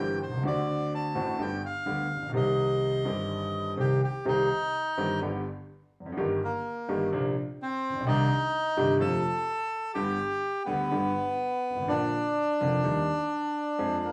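A reedy, dark bandoneon carries the melody up front over a warm concert grand piano with deep bass in this tense, passionate tango excerpt in C minor at 126 BPM with a rubato feel, played live together in a small stone room with a wet reverb, moving from D7 and G to Cm before shifting through Eb/G, Bbadd9 and F and landing on Eb at 12.8 seconds.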